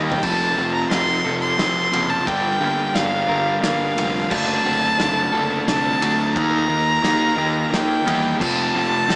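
A melancholic, brooding post-rock passage in G minor at 88 BPM in 3/4 opens on a drum fill from a loose indie kit, tucked in the background with dark cymbals and a tight kick, as a rich, intimate violin carries the melody up front with light vibrato, an airy sul tasto bow and tape echo. Beneath it, a sludgy overdriven guitar drives the riff up front, a hollow-body electric guitar picks clean, compressed arpeggios through phaser and tape echo, and a fuzz-soaked picked bass anchors the low end over the progression F7, Gm7, D7/F#, Eb and F. A second, very quiet dark distorted guitar slips in at 8.4 seconds, and the whole passage sits in a moderate concert hall reverb that feels like a big arena heard through a small speaker.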